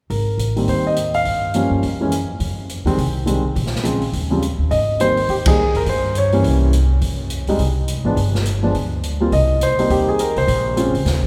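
A grand piano, upright bass and drum kit start together at 0.1 seconds in a relaxed, swinging jazz trio excerpt at a brisk 208 BPM in Ab major. The up-front piano carries the melody over Abmaj7, Fm9 and Bbm9 harmonies, supported by the woody, thumpy pizzicato bass and a kit with dark cymbals and a boomy kick, all set in the long, wet reverb of a church. A second section begins at 4.7 seconds, and the whole band hits an accent at 5.4 seconds before the harmony moves through C7b9 and Cm7.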